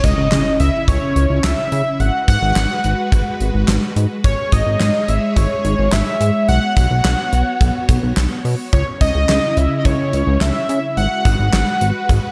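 A fat, nasal analog lead carries the melody in this short synth-pop passage, its detuned sawtooth tone thickened by a sub octave and coloured by ring modulation, a filter sweep, vibrato and a trailing analog delay. The mood is nocturnal and cool, moving at 107 BPM in a straight 4/4 in C# minor, with the harmony cycling through C#madd9, G#m7, G#sus4 and Bsus2. Beneath it, a glossy, chorused synth bass mixes pulse, sawtooth and triangle waves with a plucky filter, while a vintage string machine voiced as violas holds slow-attack, full-bodied chords through an ensemble chorus. A gated 80s drum kit with a tight kick, medium-tuned snare, hi-hat and handclaps sits up front with a big, airy, polished room sound. A background electronic impact marks the opening, sounding from 0.0 to 2.0 s. The whole mix is dreamy and soaked in a lush hall reverb, and the passage is cut from a longer piece.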